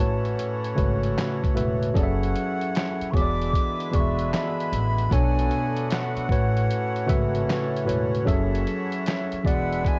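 A hazy, nostalgic lo-fi hip hop groove at 76 BPM with a 16th-note swing features a worn, slightly out-of-tune tine electric piano up front, played through a combo amp over a muffled, pitched-down sampler-style drum kit with a thumpy kick, medium-tuned snare, hi-hat and handclaps. A woody, growly pizzicato upright bass sits low until 9.8 s, while a reedy accordion holds airy sustained chords through the A6, F#m7, E7 and Bm7 changes. Above it all, a close-miked, breathy silver concert flute carries an expressive, tongued melody with a straight tone, and the cassette-tape haze on every part but the bass adds to the light-reverb, home-recorded feel of this excerpt.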